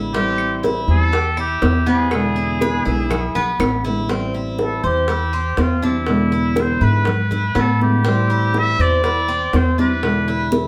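Sultry and nostalgic, this live-in-the-room Cuban son and guajira excerpt sets a breathy, nasal straight-muted trumpet, heard distant and whispered with jazz vibrato and taking a solo from 4.1 seconds, over a dark fingerpicked steel-string acoustic guitar, metallic double-strung tres arpeggios, a thumpy gut-string upright bass up front, tight vintage bongos, bright high-tuned congas in the background, and woody claves that drop out at 3.9 seconds, all wrapped in a wet studio reverb.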